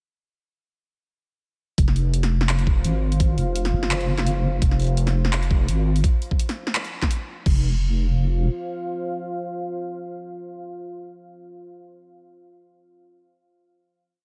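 Heavy and spacious, this short, complete half-time drum and bass piece moves at 169 BPM in F phrygian, with a light 16th-note swing and a sparse feel. From 1.8 s the drop hits at once: an overdriven electronic kick knocks up front, while a layered kit adds a woody snare, bright hats, handclaps and a crash, all set in a small room ambience. Underneath, a deep, soft wobble bass in the low register rolls through modulated phrases with changing wobble speed, its triangle and sine tones thickened by tube saturation and chorus. A dark, warbling pad of detuned sawtooths with a sub octave fades in at 2.5 s, sitting far back in the mix with chorus, built-in reverb and sidechain pumping. The beat drops out at 7.5 s, and the moody, vintage-tinged pad carries a final chord, joined by the bass until 8.5 s, before fading at 11.1 s, all under a light digital reverb.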